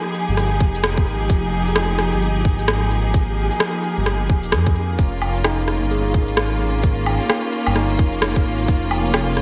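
A lush, vibrato-rich symphonic string section holds sustained chords with a sidechain pump through this ghostly, melancholic future garage excerpt in F minor at 130 BPM, swung on the sixteenths, moving from Fm9 to Bbm/F. A deep, rumbling detuned saw bass and a tight, tape-warm electronic kick sit up front with electronic shaker, rim click and woodblock re-recorded in a large room, while a very quiet glassy harmonics texture drifts beneath. At 5.4 s a barky tine electric piano enters with 12-bit sampler grit and tape echo, all in a light reverb.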